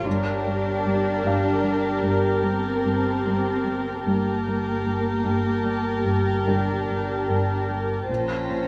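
A moderate scoring-stage reverb surrounds this ominous, eerie cinematic suspense cue in G minor, moving at 74 BPM in 5/4 and cut from a longer piece, where an intimate, up-front viola section bowed sul tasto and a woody cello section play beneath a glassy, warbling FM pad with ensemble chorus. A second cello section carries a soft-attack riff from 0.1 seconds, while a floating, pure double bass section sits in the background and a thick-felt upright piano adds a very quiet, muted texture with audible action noise. The harmony shifts from Gmadd9 to Bbmadd9 at 8.1 seconds, as a rich violin section enters high in the background.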